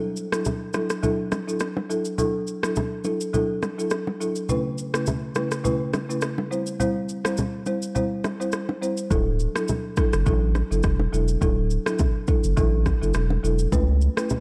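Dark, lightly reverberant small-room production frames this sunny, breezy afrobeats clip at 104 BPM in D major, where a woody, rustic marimba carries the Dadd9-based chords up front alongside an electronic, tape-tinged drum kit of deep kick, rim click and shaker, softly played bright bongos and congas, and a thick, saturated sine sub bass that arrives at 9.1 seconds.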